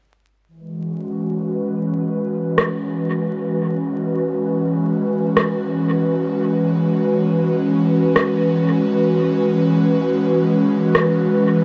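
An airy, breathy pad sits up front from 0.5 seconds, holding sustained, detuned chords with chorus and a soft, mellow tone in this hazy, peaceful stretch of ambient dub, cut from a longer piece. At 2.6 seconds an electronic rim click joins, dulled by low-pass filtering and thrown into dub echo until 11.1 seconds. A huge ambient reverb, vinyl crackle and a faint mains hum surround both parts.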